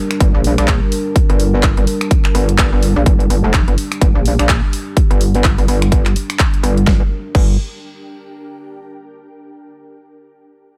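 A dark analog pad holding a G minor chord and a very quiet, ethereal, airy pad open this aggressive, swaggering bass house excerpt at 126 BPM with a swung 16th feel. A layered big-room drum kit with a huge snare, handclaps, finger snaps, hi-hat and crash enters at 0.1 s to drive the groove, just before a punchy, overdriven electronic kick and a metallic, saturated FM wobble bass arrive up front at 0.2 s. The detuned analog pad sits moody in the background with chorus and sidechain pumping shared with the bass until it stops at 7.1 s, and the dry mix leaves the airy pad's built-in reverb as the only sense of space.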